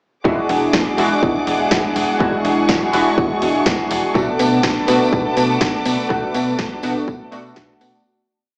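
Filtered disco house at 123 BPM in B dorian with a swung 16th-note feel, funky and sensual, built on a punchy four-on-the-floor electronic kick and a house kit of open hi-hats and snare backbeat, with a snappy, metallic slap-like FM bass jumping octaves through tube saturation, an up-front warbling sawtooth polysynth comping held chords with syncopated pushes through chorus, phaser and 12-bit sampler grit, a dark clean electric guitar strumming sixteenths in the background, and a rich violin section holding vibrato-laden sustained chords from a distance, the synth, guitar, bass, strings and hats pumping against the kick as the harmony moves from E9 to Bm7 at 4.2 s, where a distant tambourine joins, before a fade-out from 5.5 s in a bare room with moderate plate reverb and a small-speaker tone.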